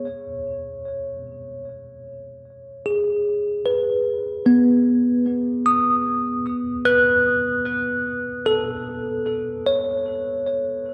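A straight 4/4 pulse at 75 BPM underlies this serene, reflective ambient fragment, cut from a longer piece and tuned slightly low, with A4 set to 437 Hz. A single tine electric piano carries everything from 0.0 to 10.9 seconds, its bell-like, bright tone ranging from B3 up to F#6. The instrument sits clean and up front in the mix, with an analog delay on its line. The harmony begins on a C#5 and settles onto an Aadd9 chord at 6.5 seconds. A wet spring reverb with a 2.3-second decay and an echo-heavy mix give the brief passage a spacious, lingering atmosphere.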